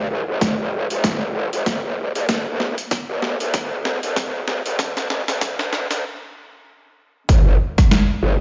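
Gritty and swaggering, this short glitch hop excerpt in G minor rolls at 96 BPM with a swung sixteenth feel, built around a growling, wobbling growl bass that is distorted, chorused and bright, sitting up front from F1 to G2. A punchy, layered electronic kick drum and a compressed, pitched-down sampler-style kit of hi-hat, rim click and high-tuned snare, both overdriven, enter at 0.4 s as a drum fill and filter sweep drive the build-up, with a stop at 6.0 s before the drop lands at 7.3 s. The mix carries a large studio reverb and sounds as if played through a big sound system in a bare room, its top end cut off above 7.5 kHz.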